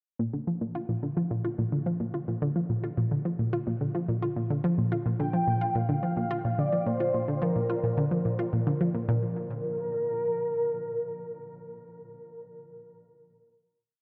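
An analog pluck opens the piece at 0.2 seconds with a round, detuned sawtooth riff, a repeating five-step loop that drifts against the bar over a Bb chord at 108 BPM, soaked in chorus and analog delay, before an expressive synth lead enters at 5.2 seconds with smooth, vibrato-laden arch-phrase motifs under ensemble chorus and delay, all set in a huge 8.1-second reverb that gives this dark, warm ambient piece an expansive, luminous mood as the final note rings from 9.1 seconds.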